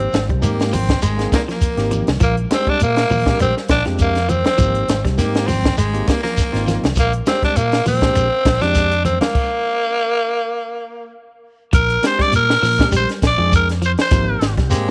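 A breathy, raspy tenor saxophone carries the melody up front over bell-like electric piano, a twangy, slightly broken-up guitar with tremolo on arpeggios, and a round, punchy fingered bass in this driving, hypnotic afrobeat excerpt. A compact, dry drum kit with dark cymbals and a high-tuned snare drives it alongside a grainy shekere and bright congas in the background, while a growling baritone saxophone with scooped notes adds a second line until 6.8 s and returns briefly at the very end. At 9.3 s the chords drop out for a stop and the congas fall away, before the groove returns under light reverb.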